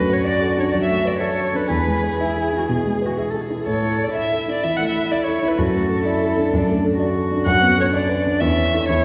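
Drenched in the long reverb of a church or concert hall, this spirited, lively classical-period piano trio fragment moves with a quick, rubato feel, as an up-front, dark-toned violin carries the melody with vibrato and bowed sul tasto, a close, woody cello adds a second line with light vibrato, and a mellow, vintage grand piano with short sustain supplies smooth accompaniment across all 9.0 seconds.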